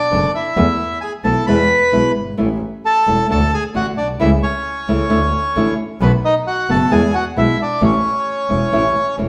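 A reedy, vintage-toned bandoneon sits up front and carries the melody in this playful, nostalgic tango, a short cut from a longer piece in A major at 133 BPM in 4/4 with a loose, rubato feel. Beneath it, a dark, fingerpicked flamenco guitar supplies the accompaniment while a single bowed double bass adds a biting, earthy low line with light vibrato, the harmony moving from Bm through E, A, D and B7 before settling back on A. The trio plays live together in one room, wrapped in a wet stone-room reverb.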